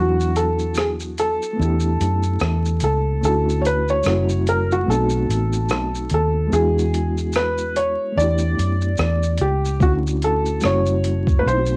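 Swung sixteenths at 73 BPM in 4/4 carry this mellow, dreamy lo-fi hip hop fragment, where a compressed, gritty sampler-style boom bap kit of thumpy kick, hi-hat, rim click and shaker enters at 0.2 seconds beneath a round, punchy, foam-muted electric bass set up front, a reedy, worn, slightly out-of-tune electric piano with fast tremolo accompanying through chords such as Dmaj9, F#7b9 and B7b9, and an intimate felt-muted upright piano melody with audible action noise, the whole piece tuned to A4 = 437 Hz and wrapped in light reverb, home-cassette haze and vinyl crackle.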